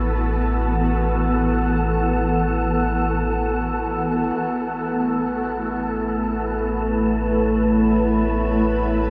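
Ambient music in free time and A major, serene and peaceful, cut from a longer piece, where a shimmering, ethereal pad with an octave-up shimmer and chorus sits up front holding sustained chords that move from Esus2/A to A at 4.4 seconds, over a deep, round sub bass on a low A, while a nasal drone with moving overtones hovers in the background and an airy, breathy wind-like noise texture drifts above, all bathed in a concert hall reverb for a dark, warm sound.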